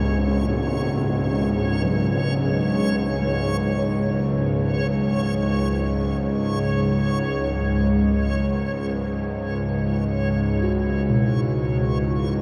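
A tense, string-like drone sits up front in this vast, ominous stretch of dark ambient music, its detuned sawtooth body and noise layer sustained low between C#2 and G#2 with a slow attack, vibrato and its own built-in reverb. Behind it, a reversed, granular texture holds a bright, dreamy C#5, its soft-attack triangle tone bathed in built-in reverb. A very quiet tam-tam adds a dark, acoustic cymbal shimmer at 0.4 s. From 1.8 s a bronze singing bowl plays meditative arpeggios from B2 to F#4 in the background, its metallic, ringing strikes close-miked and dry, with slow beating and a trailing delay. The piece moves in free time, tuned to A4 = 437 Hz, inside a wet cathedral reverb with a 5.8-second decay, and this 12.4-second passage is cut from a longer work.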